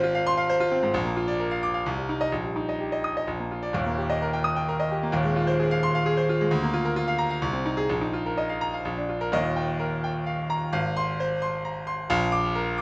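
A bright grand piano plays alone from the first moment in a heroic, sparkling classical virtuoso study in Eb major, at 130 BPM in 3/4 with a flexible rubato feel, ranging from Eb1 up to Eb6. Its brilliant, natural tone sits up front under close, detailed microphones in a moderate recital hall reverb, while the harmony moves through Fm/Ab, Bb, Cm and Eb before the opening phrase returns at 9.3 seconds. This passage is cut from a longer piece and runs 12.8 seconds.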